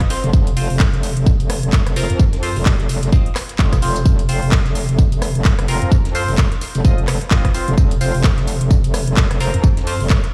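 A swung 16th-note groove at 129 BPM in 4/4 drives this swaggering, gritty bass house excerpt, cut from a longer piece and built around an F5 chord. A punchy, tape-warm electronic kick sits up front, layered with a house kit of handclaps, rim clicks and metallic hi-hats. Further back, a compressed, sampler-style breakbeat kit adds hi-hat, tambourine and a high-tuned snare, all high-passed, with sidechain pumping on the hats and percussion. From 0.2 seconds, an aggressive FM wobble bass, saturated with overdrive and thickened by chorus, growls up front between F1 and F2 and pumps with sidechain compression. Above it, a bright, nasal sawtooth chord stab with a band-passed filter pluck and moving notch decays through phaser and dub echo, also pumping, while the mix carries a big-room, large studio reverb character.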